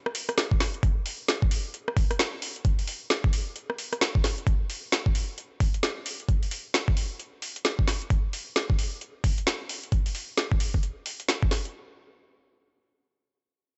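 A garage drum kit opens this sunny, soulful UK garage excerpt at 0.1 s, its layered electronic sound built from metallic hi-hats, a woody snare and rim clicks, overdriven and placed up front. At 0.5 s an electronic kick drum joins, a sampler-style, pitched-down thump that is compressed, gritty and pushed through overdrive so it sits at the front of the mix. The groove runs at 132 BPM in 4/4 with a 61% swing on the sixteenths, giving the pattern its loose, shuffling garage bounce. The whole passage stays within a single section, a drums-only stretch cut from a longer piece. A digital ambience surrounds the parts, and the sound is dark overall, with its top end held under 8.0 kHz.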